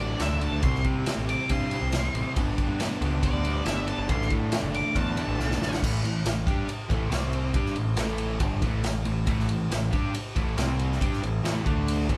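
Classic rock with a sunny, driving mood at 139 BPM in a straight 4/4, played live by a band in one small room with moderate reverb, cut from a longer piece. An octave-fuzz lead guitar solo with a warm, distorted tone carries the melody until 5.8 seconds, capped by a drum fill, over chords moving from D through C and G to Asus4. Throughout, the riffing of a bright, compressed distorted guitar, a dark double-tracked overdriven guitar and a very quiet sludgy guitar sits behind an up-front, growling overdriven bass and a gritty, saturated garage drum kit with dark cymbals and a punchy kick. From 5.8 seconds the chords cycle between A5 and C5 before landing on D5.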